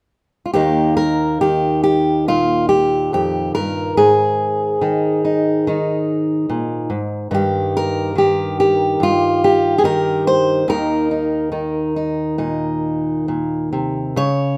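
A moderate studio reverb gives this short folk excerpt a gentle space, with a single fingerpicked steel-string acoustic guitar sitting up front in the mix. The guitar has a warm auditorium tone and plays alone from 0.5 to 14.6 seconds, ranging from a low Eb2 up to Db5. The mood is warm and gentle, set in Eb major at around 71 BPM in 4/4, though the rubato feel lets the pulse breathe freely. The harmony moves from Eb to Ab5, then to Eb/G at 7.3 seconds before settling on Eb5. Cut from a longer piece, it feels like a passage of solo fingerstyle playing.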